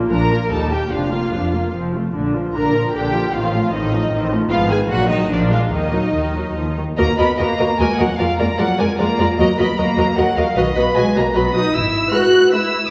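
This excerpt from a quick classical-period movement for muted string orchestra opens with violas, double basses and cellos together, joined almost at once by two violin sections, all playing con sordino with vibrato for a dark, veiled sound. At 151 BPM in 3/4 with a rubato feel, the music is spirited and graceful, starting in Bb major before turning to Eb minor from 4.5 s. The upper violins carry the melody with a smooth, soft-attacked top, while the second violins weave a supporting line beneath them. The violas sit close and up front in their accompanying role, the cellos sound lush and distant in the background, and the double basses anchor the bass with a soft attack and smooth top. A wet recital-hall reverb places the listener further back in the room, and the double basses drop out at 12.0 s just before the other strings finish.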